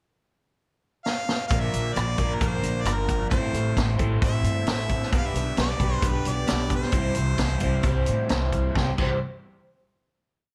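Open-road and warm, this short folk rock and heartland rock piece at 132 BPM in C major begins with a pickup bar and a drum fill at 1.1 seconds from a punchy, up-front vintage kit with dark cymbals and a high-tuned snare; at 1.5 seconds a woody pizzicato upright bass, a boxy, shimmering twelve-string acoustic guitar and a bright, double-tracked overdriven electric guitar with phaser join the harmonica's present, lightly vibrato-tinged motif melody, moving through Bb, Am and G/B before landing on C, all in a dark production with light reverb.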